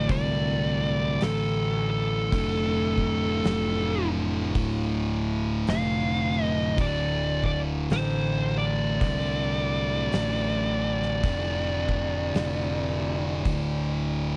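A slow, swung 4/4 groove at 54 BPM drags this heavy, sludgy stoner and doom metal excerpt in D minor: a double-tracked thick fuzz guitar grinds out a low riff over a round, overdriven picked bass and an oversized low-tuned drum kit with a fat snare, punchy kick and gritty saturation, while a compressed fuzz lead guitar with slapback echo carries the melody up front, held on a single D minor chord in a dry, close 1970s-style studio sound.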